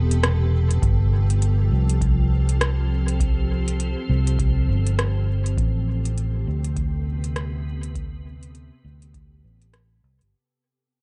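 A dry, dark-topped mix opens this hazy, spacious ambient dub excerpt, where a round, punchy fingered electric bass sits up front beneath a calm, detuned organ-like pad of sustained chords moving from Am9 to G9sus4 and back, with ensemble chorus and its own reverb, while a crisp-hatted electronic kit of hi-hat and rim click, overdriven and cast through dub echo, is joined by a deep analog kick entering at 0.8 seconds over a lazy swung feel, all of it fading out from 4.0 seconds.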